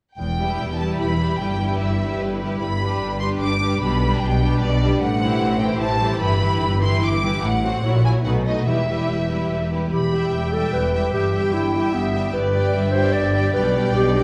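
The sound is lush and distant-tinged, bathed in a wet scoring-stage reverb, as a stormy, urgent romantic movement for symphony orchestra drives forward at 149 BPM in 3/4, in E minor. A focused, bowed violin section carries the melody over a second violin line and an expressive viola accompaniment, while a rich, smooth cello section in the background and a soft-attacked double bass section anchor the bass, and a ringing concert harp spins fingerpicked arpeggios behind them. At 9.9 s a close-miked solo clarinet enters up front with its own second line as the opening phrase returns, and the excerpt ends at 14.2 s.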